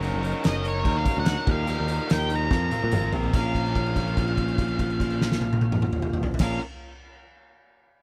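This restless, moody indie rock excerpt in Bb minor drives at 145 BPM, with a lo-fi, slightly broken-up guitar through a small old amp, dressed in lush chorus and tape echo, playing a riff beside a bright overdriven guitar, over a round, punchy picked bass and an up-front drum kit with a fat snare, dark cymbals and a pumping room sound. A jingly tambourine sits in the background of the first half, while a dark octave-fuzz lead guitar enters at 0.5 seconds. The chords move through Gb6, Ebadd9 and Fsus4, and after a drum fill from 2.5 seconds they arrive on Bbm at 3.3 seconds, where the fuzz lead holds a long note in a small room.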